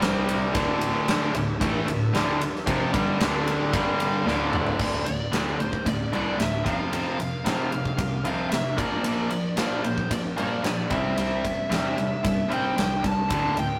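A rough rehearsal-room sound with tube saturation and moderate reverb frames this driving, aggressive hard rock excerpt in 4/4, where a huge arena drum kit with punchy kick and bright cymbals sits up front beside a biting overdriven guitar riff, a hollow-body semi-hollow guitar and a very quiet double-tracked high-gain guitar thicken the riff, a smooth bowed cello carries the bass in the background, a gritty tonewheel organ with key click and slow rotary holds very quiet sustained chords until 4.8 seconds, and a distorted high-gain lead guitar melody enters at 4.0 seconds, just ahead of a drum fill, over chords moving from D5 through F and Bb to C.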